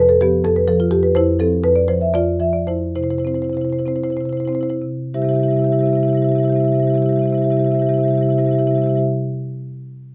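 Contemporary classical music for solo marimba, this warm, flowing excerpt from a longer piece unfolds in a rubato 7/8, its woody, rounded soft-mallet tone sitting up front in moderate studio reverb as it slows from 0.3 to 5.1 seconds and drifts from an opening Fadd9 to rest on C.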